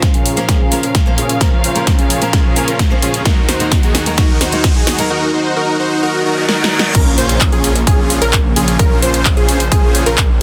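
A punchy, up-front electronic kick drives this euphoric, emotional festival progressive house excerpt in Bb minor at 130 BPM, where a thick, airy supersaw riff and lush bowed strings with 12-bit sampler grit move through filter sweeps under a big-room kit with a huge snare and metallic hats, a fingerpicked acoustic guitar with finger squeak, and very quiet risers and a reverse cymbal, until the drop at 6.9 seconds brings in a chorused detuned saw bass and a decaying unison pluck arpeggio, all pumping against the kick.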